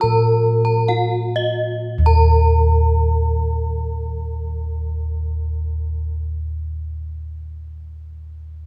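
Shimmering and brilliant, this short cut from a longer Balinese gamelan piece moves in free time, slowing down over its first 1.9 seconds before a new section begins. A soft, mellow bronze metallophone struck with padded mallets carries the melody with a boxy small-room character, while a second metallophone, played with a horn mallet, adds bright, full, close and dry arpeggios higher up; both are tuned in pairs so their ringing notes pulse with beats. Round, up-front bossed gongs anchor the bass, and a concert hall's lush reverb surrounds the ensemble.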